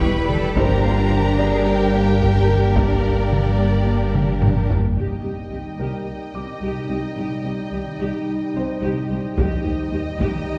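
Heard from further back in a wet scoring stage, this brooding, relentless stretch of hybrid orchestral and electronic film score sets a dark violin melody, bowed with vibrato and a soft attack, over a smooth second violin line, rich violas and a very quiet, ethereal airy pad. Mellow, distant French horns and a very quiet trombone section hold sustained chords, the trombones dropping out at 4.7 s. Underneath, a harp-like synth pluck rings out chorused, phased arpeggios, a clean sine sub bass anchors the first half, and lush cellos and double basses carry the low end. Hard-stick taiko drums in the background play a fill from 4.1 s and return at 9.4 s, while a clear grand piano adds delayed texture.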